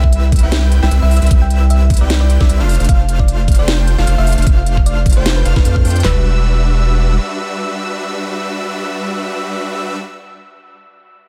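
The rhythm sits in a half-time 4/4 feel at 152 BPM with a light 16th-note swing, driven by a layered pop drum kit with a knocking kick, fat snare, handclaps and toms. A trap kit adds a sharp snare and crisp, tape-warm hi-hats, and both kits sit in a small room ambience. This lush, dreamy future bass drop in E phrygian is cut from a longer piece. A deep, saturated sine sub bass pumps up front against huge, detuned supersaw chords that move from Cmaj7 to F6 through a cassette-tape haze and dub echo. Above them, a round, tine-like, thumb-piano-style FM pluck carries the melody in a dark, gentle tone with chorus and delay, while an airy lead plays soft arpeggios high in the background with vibrato and a moving notch. The harmony turns to Em9 at 6.0 seconds, both drum kits stop at 6.1 seconds, and the bass drops out at 7.2 seconds, leaving the synths floating in a dry mix with little reverb.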